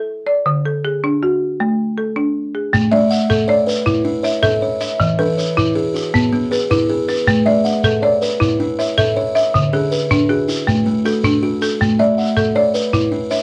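A folk marimba struck with hard mallets opens alone, spilling dry, bright arpeggios from its hardwood bars in an interlocking cycle rooted in the southern African traditional style. At 2.7 seconds a grainy shekere joins from a distance, set back in a large room, and at 2.9 seconds a buzzing kalimba adds plucked, ringing arpeggios with a hollow-box tone, sitting up front beside the rustic marimba. The music moves at 106 BPM in a straight 12/8, counted in dotted quarters, in A major with the tuning set to A4 = 436 Hz. The harmony circles through D, A and E, giving the rippling, hypnotic cycle a steady sense of return. A moderate studio ambience frames the parts, while worn cassette tape lends the whole recording a warbling pitch drift. This fragment is cut from a longer piece.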